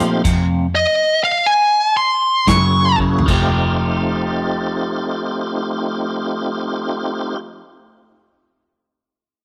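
Light reverb and a small-room ambience frame this short, rollicking cut from an electric blues shuffle in F mixolydian. It swaggers along in swung 4/4 at 73-86 BPM, slowing through its opening seconds. A bright, overdriven lead guitar sits up front with a melody from 0.8 to 3.0 seconds, over a twangy, slightly broken-up riff guitar with phaser, a round, foam-muted vintage bass, and a full tonewheel organ with slow rotary speaker and chorus vibrato. The natural country drum kit, with its punchy kick, plays a fill before stopping at 3.5 seconds, and the riff guitar, bass and organ carry on.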